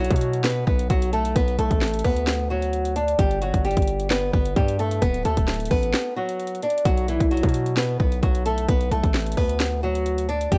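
Hip hop trap excerpt in B minor at 131 BPM with a half-time feel, menacing and hard-hitting, where an up-front fingerpicked flamenco guitar with fresh strings carries the melody over a saturated, heavy 808-style bass with a noise layer and an electronic kit of hard-clipped kick, sharp snare and metallic hats, moving from Bm through Gadd9 and D back to Bm, with a break from 5.9 to 6.9 seconds, all in a dry, gritty hardware sound with digital ambience.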